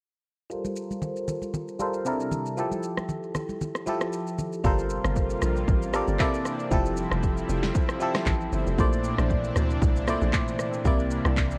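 A biting, barking FM electric piano accompanies this relaxed, soulful amapiano excerpt, its percussive, fast-decaying chords carrying a noise layer and chorus while a filter sweep works through the opening. It starts at 0.5 seconds alongside a layered, up-front deep house drum kit with a punchy kick, fat snare, handclaps, rim click and shaker, all riding a gently swung groove. Bright, thin-skinned congas, close and dry under soft hands, sit further back until 4.5 seconds. At the drop at 4.6 seconds, a hollow, bouncy log drum bass enters up front with a fast attack and noisy FM edge, and a lush, thick unison pad fills in behind with detuned sawtooth chords, a slow attack, chorus and sidechain pumping. The harmony moves through rich extended chords such as Gm11, C13 and Fmaj9, later reaching Bbmaj9#11 and C9. Light reverb and a worn, warbling cassette-tape character with drifting pitch give the whole recording a vintage patina.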